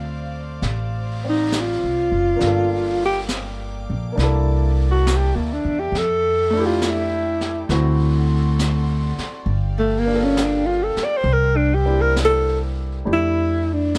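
Romantic and intimate, this slow jazz ballad excerpt swings gently at 68 BPM in F major, moving through chords like Dm7, Gm7, C13 and Fmaj13. A breathy, mellow alto saxophone carries the melody up front with vibrato and a soft subtone from 1.3 seconds. Beneath it, a natural-sounding grand piano accompanies, a woody, dark pizzicato upright bass sits close, and a distant, roomy brush kit with a high-tuned snare joins at 0.6 seconds, while a reedy chamber string section with a gut-string tone holds bowed chords in the background until 13.0 seconds, all in a dry, dusky production.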